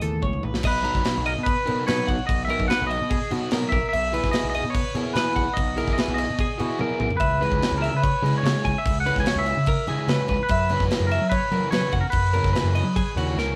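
Intricate and playful, this math rock and midwest emo excerpt in B major moves at 146 BPM in a straight 4/4, with a clean, twangy lead guitar carrying the melody over bright twelve-string arpeggios, a dark, double-tracked overdriven riff guitar, a round, growling overdriven bass and a punchy, up-front acoustic drum kit, while a dark, fingered mellow guitar sounds only in the background until 2.3 seconds, all captured as a band playing live in one room with moderate reverb through chords from Amaj9 and Bmaj7 to C#m7 and F#7sus4, marked by drum fills near 0.2 and 6.8 seconds.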